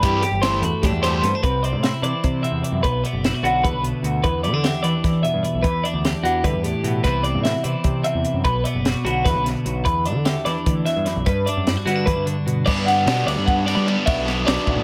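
At the opening, a full band sounds together: two twelve-string electric guitars, an overdriven electric guitar riff, a growling picked bass and a compact cocktail drum kit, setting a wistful, intricate math rock and midwest emo mood in a brisk 7/8 at 299 BPM counted in eighths. One twelve-string guitar carries the accompaniment up front with a bright, twangy, compressed tone, while the other spins clean picked arpeggios higher up, colored by tape echo and plate reverb. The double-tracked overdriven guitar, warm and compressed, states its riff only briefly before dropping out at 1.3 seconds, then returns at 12.7 seconds as the accompanying twelve-string stops, marking a new closing section. Underneath, the bass growls through overdrive, and the dry drum kit sits close, with a punchy kick, a high-tuned snare and dark crash, ride and hi-hat cymbals. The harmony moves through chords such as Cmaj7, Bm/F#, Em7 and Gmaj7 before settling on Bm near the end of this fragment of a longer piece, all within a moderate studio room sound.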